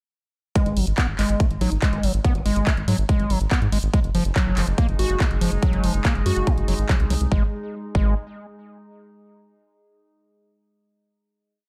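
A dark, dry production frames this short, intense and hypnotic psychedelic trance piece, where a punchy four-on-the-floor electronic kick sits up front beside a big-room dance kit of closed and open hats and claps, a round analog bass rolls in sixteenth notes, and a squelchy, gritty overdriven acid bass loops a 12-step line with accents and slides that drifts against the bar, while a nasal vowel-sweep wobble bass adds short answering phrases in the background until 2.4 s, an overtone-sweeping drone with a slow attack arrives at 4.3 s, and the groove gives way to a final chord at 7.3 s.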